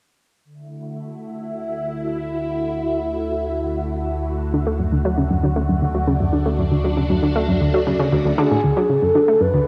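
A home cassette recording bathed in wet spring reverb gives this short cut from a longer piece a hazy, lo-fi glow. It is ambient, sequencer-driven space music in D major at 117 BPM in a straight 4/4, with an expansive, cosmic mood. From 0.4 seconds a phased string machine holds swirling, warbling sustained chords, its ensemble chorus, phaser and shimmer reverb carrying a filter sweep, while a deep, round analog bass fades in beneath it on a dark, sustained D. At 4.5 seconds a nasal, wave-folded analog pluck enters up front with a riff of fast-attack, short-decay notes, coloured by chorus, cassette tape and tape echo. Near the close, at 8.4 seconds, an expressive synth lead adds a smooth, mellow melody with vibrato, chorus and tape echo just as the music moves into a new section.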